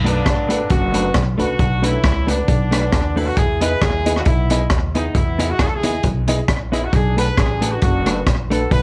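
A lightly swung 4/4 ska groove at 135 BPM rides on a gritty, saturated breakbeat kit, up front with a punchy kick, hi-hat and rim click, under a thumpy, woody pizzicato upright bass, all in a joyful, cheerful E mixolydian over Bm7, Emaj7 and back to Bm7. A clean, compressed electric guitar fingers the accompaniment while a worn, slightly detuned upright piano adds stabs in the background. The piano and drums both carry a slapback echo, and a distant, roomy horn section carries the melody in a small room with light reverb, in this short cut from a longer piece.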